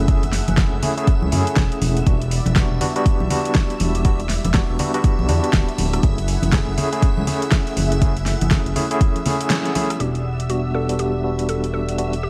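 Hypnotic deep house at 121 BPM with a swung 16th-note feel, built on a deep, tape-warm electronic kick up front, a smooth gliding sawtooth synth bass with portamento, barky overdriven tine electric piano stabs with fast tremolo, digital delay and sidechain pumping, a detuned analog pad and shimmering string-machine violins in the background, fat snare, metallic hats and rim clicks from the drum kit, bright close congas, and a woody, round FM mallet-like pluck melody that enters at 10.0 s as the electric piano gets a filter sweep, all over a bed of vinyl crackle and light digital ambience.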